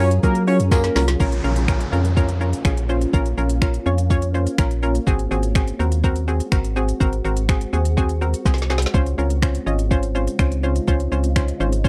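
A fat, sawtooth-edged analog lead with slapback echo opens this confident, bittersweet dance-pop excerpt in Bb minor at 124 BPM, singing only through the first 1.1 seconds over a drop while a jingly tambourine slips in faintly during a drum fill. Beneath it, a dark, percussive organ-like FM bass and a hollow, bouncy square pluck with chorus pump against the sidechain. A shimmering, ethereal pad with phaser and reverb sits in the background, and a soft-kicked, woody-snared R&B kit with snaps and shaker keeps time up front. An electronic downlifter sweeps through from 1.2 to 5.1 seconds as the chords move from Bbm through Ab7 to Dbmaj7 in a dry, close studio sound.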